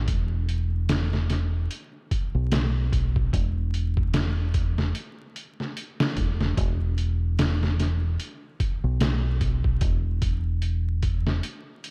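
Vinyl crackle and a light reverb frame this short cut from a longer trip hop piece, giving it a dusty, dark and brooding atmosphere. A deep dub electric bass, played with the fingers, sits up front from the very start with a round, punchy tone that sounds direct and amped, holding to the low register between E1 and B1. The sampler-style drum kit arrives at 0.1 seconds, compressed, pitched down and muffled, with a thumpy kick, a medium-tuned snare and hi-hat carrying a tape-warm character. The groove moves at an unhurried pace in 4/4 with a lazy swing on the sixteenths. The bass drops out at 11.4 seconds, leaving the drums to close the fragment at 11.9 seconds.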